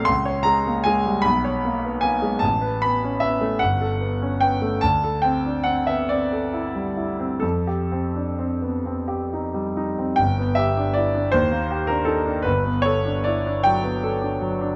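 A clear concert grand piano carries this dreamy, serene impressionist classical fragment entirely on its own, cut from a longer piece. Played in a lilting 6/8 with a free, breathing rubato, it opens on a single high C#5 before drifting through unresolved harmonies such as Bsus2, Aadd9, Gmaj9 and D9sus4, with an F9 coloring the line at 7.4 seconds. At 10.2 seconds the music turns to a new passage, moving from G through Ebmaj7 and settling back onto Gmaj9. The instrument spans a broad range, from a deep bass down to G1 up to bright upper notes around C6, giving the sound an open, spacious character. Close, detailed microphones place the piano up front, while a light reverb lends a gentle sense of room.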